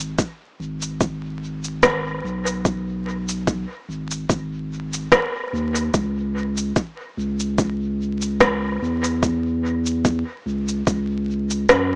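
A round, sine-toned sub bass and an overdriven electronic cabasa and rim click open this ambient dub excerpt together, with a soft, overdriven electronic kick drum arriving at 0.2 seconds. The mood is deep and spacious, set in common time with a gentle swing on the sixteenths. The bass sits up front with a fast attack and long, sustained notes, its warmth anchoring the low end. The cabasa and rim click carry a dub echo that trails behind each hit, while the produced kick adds a gritty weight of its own. Light reverb, vinyl crackle and a small-speaker quality give the whole track a worn, intimate character. All three parts hold steady through a single section before the fragment ends at 12.0 seconds.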